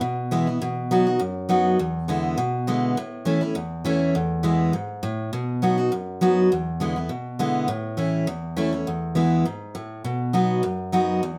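A bright, full-bodied dreadnought steel-string acoustic guitar plays solo and up front with audible finger squeak, picking a lively, virtuosic bluegrass run in E major at a brisk 204 BPM with a light swing, cycling through E, B, E7 and A across two matching passages in this 11.4-second cut from a longer piece, set in a moderate studio reverb.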